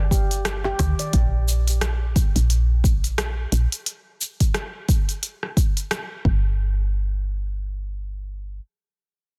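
Warm and mystical, this short organic downtempo fragment moves at 88 BPM in G minor with a swung sixteenth-note feel, opening on a ringing, bright handpan arpeggio with tape echo that stops at 1.1 seconds, while a small, close darbuka slips in briefly in the background. A deep, up-front electronic kick and a crisp, tape-warm afro-pop kit of hi-hat, rim click and shaker, with soft clipping on the snare, carry the groove until about 6.4 seconds. Underneath, a woody, round FM bass pumps against the sidechain and holds on alone to 8.6 seconds, all set in digital ambience under a dense, heavily limited modern master.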